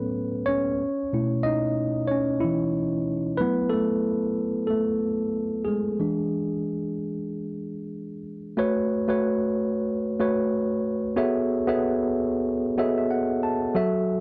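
A light reverb and digital ambience surround a lone tine electric piano, worn, mellow and slightly out of tune, sitting up front in this smooth, bittersweet soul fragment cut from a longer piece. At 93 BPM in 4/4 with a gentle sixteenth-note swing, the piano carries a solo line from the start until 8.6 s over chords moving from A69 through B9sus4 and F#m7 to E7. The second passage returns to A69 and settles on B13sus4, with a short piano fill at 12.5 s.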